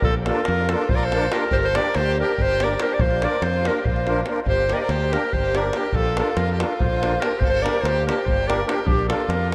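A clear, classically styled clarinet opens this exuberant, virtuosic Balkan wedding-band tune at once, sitting up front as the solo melody. Alongside it from the start, a single bowed violin adds a rich, focused second line with vibrato, while a punchy, bright fingered electric bass drives the low end and a tight acoustic davul sits in the background. A reedy musette accordion joins at 0.3 seconds with shimmering, airy accompaniment. The music moves briskly at 285 BPM counted in eighths, in a straight 7/8 metre in Bb major, alternating between Bb and G minor chords throughout. The whole band is bathed in a cathedral reverb with a 5.4-second decay, giving the sound a vast, echoing space. This short passage of about 9.5 seconds is cut from a longer piece.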